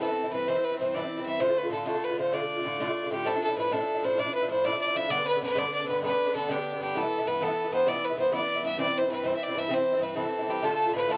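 A bright, biting fiddle carries a driving, dark and lively Celtic folk melody in D dorian at 130 BPM in 12/8, up front over a mellow, metallic Irish bouzouki picked on double strings, with a distant, chiffy wooden whistle slipping in as a second line at 10.6 seconds, all captured by close, detailed microphones in this short cut from a longer piece.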